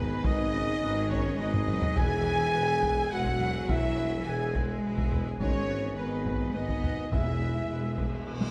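Bathed in a moderate scoring-stage reverb, this triumphant, adventurous cinematic orchestral cue in E major moves at 105 BPM in 3/4: rich, bowed violin sections carry the melody and a second line alongside a pure, very quiet flute section, while a bright viola section accompanies, mellow French horns and a hollow stopped-flute pipe organ sustain chords, a dark trumpet section adds stabs, and a clear cello section, a tuba and a smooth double bass section anchor the bass; a hard-stick taiko ensemble drives from 0.2 s with a fill before the timpani strike at 2.0 s, and a huge cymbal swell arrives at 7.9 s as the harmony shifts between G#m and E.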